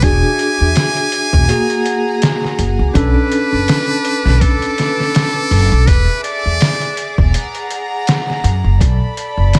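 A dry, close-sounding fragment of smoky, cinematic trip hop at 82 BPM in B dorian, built on a muffled, overdriven, pitched-down sampler-style drum kit with a thumpy kick and a woody pizzicato upright bass up front, while a buzzy, muted trumpet with vibrato and tape echo carries a jazz-style melody until 7.3 seconds over a bell-like tine electric piano with harmonic tremolo that stops at 5.9 seconds, and a bowed sul tasto violin section holds intimate sustained chords over a cycling E7, F#add9 and Bm7 progression.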